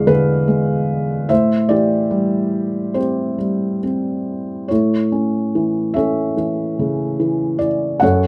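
A felt-muted upright piano carries this brief classical excerpt alone, its soft, mellow tone sitting up front with an intimate closeness and audible action noise that lends a vintage character. The playing is lyrical and rubato, moving at roughly 68-75 BPM in 4/4, and spans from E2 up to F#5. The mood is dark and reflective, opening on an E7 chord before settling into A minor with an Am7 at 1.3 seconds. At 4.7 seconds the harmony brightens to A major on an A chord, shifting the color of the passage as it continues to 8.3 seconds. A light reverb surrounds the piano, keeping the smooth, muted sound close and personal, and the fragment is cut from a longer piece.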